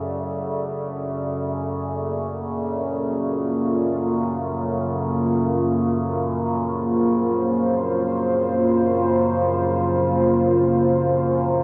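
A dark analog pad and a low, overtone-sweeping drone sound together from the start of this dark, desolate ambient drone excerpt. The pad's deep, detuned sawtooth and triangle tones with a sub octave sustain moody chords through chorus, moving from D5 to A#sus2 at 1.9 seconds. Beneath it, the wave-folded, resonant drone carries shifting overtones through chorus, phaser and its own reverb, and the whole dreamy mix is soaked in a long plate reverb.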